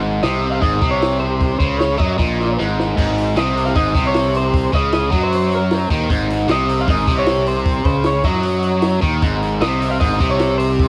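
A biting, overdriven guitar sits up front with a bright, double-tracked riff, joined from the start by a round, punchy fuzz bass and soon after by a compact cocktail drum kit with a high-tuned snare, tight kick and dark cymbals. This upbeat, jangly indie rock runs at 153 BPM in Ab major, cut from a longer piece, with a slightly broken-up lead guitar through a small old amp carrying the melody with vibrato and tape echo. A drum fill at 2.6 seconds leads into the next section, and the home recording on cassette carries a light reverb.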